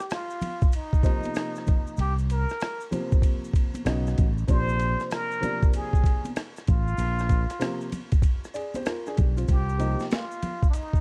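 Nocturnal and smoky, this short jazz-hop cut from a longer hip hop piece sits at 96 BPM in C minor, with a swung 16th-note feel. A gritty, pitched-down boom bap drum kit runs throughout with a thumpy kick, high-tuned snare, rim click, hi-hat and ride, its vintage 12-bit sampler crunch placed up front, while soft-handed maracas and congas add a small-room acoustic layer just beneath. Over this, a plunger-muted trumpet carries the melody in a breathy, whispered, intimate voice, with scooped notes, light vibrato and a wah-wah colour. A woody, short-sustained upright piano enters at 1.0 seconds, and a growly, punchy fretless electric bass joins at 2.0 seconds after the opening break. The harmony moves from Cm7 through B9 and Bbadd9 before returning to Cm7, all wrapped in a dark, dry production dusted with vinyl crackle.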